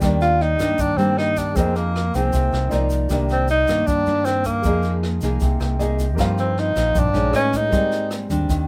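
A breathy, mellow tenor saxophone with vibrato, subtone and scooped notes carries the up-front melody over a melancholic, smooth bossa nova in C minor at 156 BPM, supported by fingerpicked classical nylon-string guitar, a punchy amped fingered electric bass, a jazz brush kit with boomy kick and rim clicks, a grainy tube shaker and an intimate grand piano with audible action noise that adds a fill at 5.4 seconds, all in light reverb in this short cut from a longer piece.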